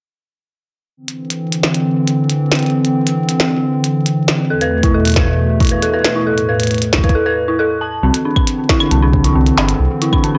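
IDM excerpt in C major at 136 BPM, intricate and glitchy, where a hollow, flute-like pad holds sustained chords from 1.0 seconds over a glitchy kit of clicky hats, claves and a tiny snare, an eerie, inharmonic FM bell with 12-bit grit and analog delay spins arpeggios from 4.5 seconds as a deep electronic kick joins, and a rumbling detuned saw bass surfaces at 8.0 seconds, all in a dry, gritty hardware sound with light reverb.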